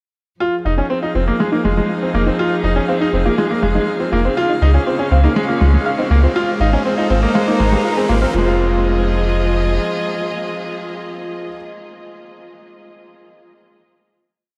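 A bright, brilliant grand piano sits up front, repeating a natural-sounding ostinato riff through digital delay, at the heart of this short, complete piano and strings electronica piece in F minor at 121 BPM. Beneath it, a deep, round sub bass with a sine-like tone plays an off-beat line from 0.7 seconds, while a woody string quartet, bowed with vibrato and one player per line, holds slowly shifting chords moving from Fm7 through Db and Abadd9. In the background, a soft, gentle pluck repeats a 6-step arpeggio loop that drifts against the bar, coloured by chorus, cassette tape and digital delay, with a filter sweep on it across the build-up. An electronic riser enters at 5.5 seconds to carry the build toward 8.3 seconds, where the music settles onto a final Fm7 chord. The mood is hypnotic and intimate, bathed in a huge ambient reverb within a dark production.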